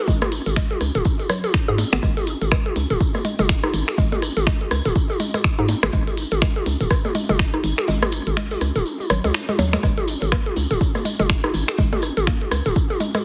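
Cool and sparse, this minimal techno cut moves with a swung 4/4 groove, lifted from a longer piece. A deep, up-front electronic kick anchors the pulse, joined by a minimal click kit of finger snaps and clicky hi-hats, a layered, tape-warm techno kit of percussion blips, rim clicks and toms that sounds re-recorded in a small room, and a jingly acoustic tambourine sitting low in the mix. Underneath, a hollow, bouncy FM bass with a fast attack and punchy, decaying notes gets a touch of tube saturation and pumps against the kick. A woody, round mallet-like synth pluck carries the riff with a short decay and a sub octave, dressed in chorus and dub echo and ducking with the sidechain. The kick drops out from 7.9 to 9.8 seconds, while the percussion, bass and pluck carry on until it returns. Light digital ambience frames a heavily compressed, radio-like sound that keeps the whole track tight and close.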